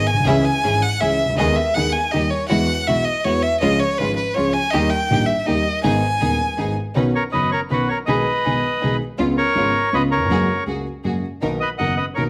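A bowed, vibrato-rich solo violin leads the opening over a dark, intimate grand piano with audible action noise and lush symphonic string stabs, before a reedy, vintage bandoneon takes the melody at 7.1 seconds in this nostalgic, playful rubato tango fragment in 3/4 set in a large studio room.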